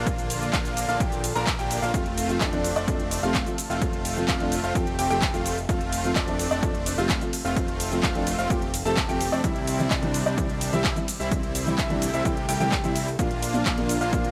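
An overdriven, punchy electronic kick drives this euphoric, triumphant festival progressive house excerpt in F major at 128 BPM, joined by crisp-hatted big-room drums with handclaps, ride and shaker, detuned supersaw chords with lush chorus and tape echo, a fat, nasal analog bass, boxy grand piano arpeggios, a very quiet phaser-touched pad, and, from 1.9 s, a felt-muted upright piano with audible action noise, with the bass, supersaws and both pianos pumping under sidechain over chords moving from Bb to F to C.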